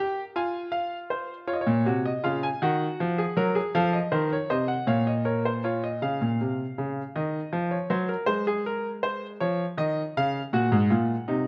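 A baroque-style classical fugue in three parts, this brief piece cut from a longer work is played on a solo grand piano in Bb minor at 53 BPM in a straight 6/8. The mood is contemplative yet driving, with the piano heard clear and present, up front across a range from Ab2 to Ab5 for the full 11.5 seconds. Close, detailed microphones capture the instrument, while a moderate recital hall reverb with a 1.6-second decay gives it a sense of space. The opening section moves through Fm, Bbm, Ebm and F7 before returning to Bbm, and a second section beginning at 6.0 seconds turns through Ebm7, Ab and Db to settle on Gb. The tuning sits slightly low, at A4 = 438 Hz.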